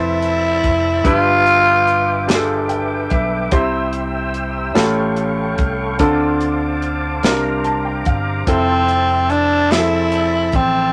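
Soulful and jubilant, this slow gospel excerpt in 6/8 puts a growling, raspy tenor saxophone up front for a brief melody that returns at 8.5 seconds, over a clear grand piano whose fills arrive at 2.3 and 7.2 seconds. A tonewheel organ with fast rotary speaker, light overdrive and chorus vibrato holds warm sustained chords, while a dark, round fingered electric bass and a tight, dry funk drum kit of hi-hat, kick and snare carry the groove. A moderate studio reverb frames the ensemble.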